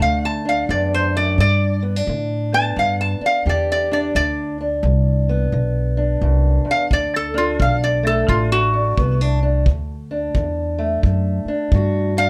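Light reverb colours this fragment of a longer piece, with the strings placed up front. It is a gritty, swaggering acoustic country blues in D mixolydian, moving at 87 BPM in 4/4 with a light swing on the eighth notes. A metal-body resonator guitar, played with fingerpicks and a steel bar, carries a bright, nasal, metallic slide solo through the whole clip. Beneath it, a dark, boxy parlour acoustic guitar is fingerpicked over D and then G from 1.4 seconds, while a woody pizzicato upright bass on steel strings holds the low end. At 6.9 seconds, as the harmony returns to D, a tight kick drum played with brushes joins from a studio room.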